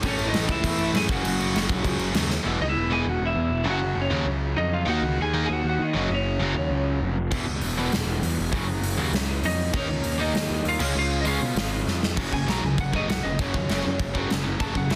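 A growly, fuzzed-out electric bass sits up front in this energetic, rebellious punk rock excerpt at 198 BPM, driven by a punchy, big-room acoustic drum kit that drops out at 2.4 seconds and returns at 7.3 seconds through a half-time stretch, while a crunchy overdriven guitar, a tight distorted guitar and a double-tracked cranked stack guitar churn out bright picked riffs beneath a dark, slightly broken-up, compressed lead guitar melody that breaks into a solo at 12.2 seconds, all in a dense, heavily limited, dry modern mix.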